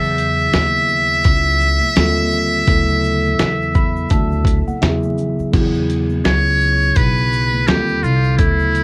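A muted trumpet carries the melody at the front of this smooth, cool jazz-hop piece in E major. Its buzzy, thin metal-mute tone has light vibrato, scooped notes and a forceful jazz phrasing, trailed by tape echo. A dusty, sampler-style drum kit enters at 0.2 seconds, gritty and compressed with a thumpy kick, a medium-tuned snare, hi-hat, shaker and crash, all colored by cassette tape, at a relaxed 84 BPM with a swung sixteenth-note feel. Beneath it, a mellow, clean tine electric piano plays through its built-in speakers and adds a fill from 3.4 seconds, moving through lush chords such as Emaj9, D#maj9 and Dmaj9. A woody pizzicato upright bass holds the low end, while a very quiet egg shaker and congas add soft acoustic texture. The whole cut sits in a snug booth ambience with the vinyl crackle of a home cassette recording, shifting into a new section at 5.5 seconds.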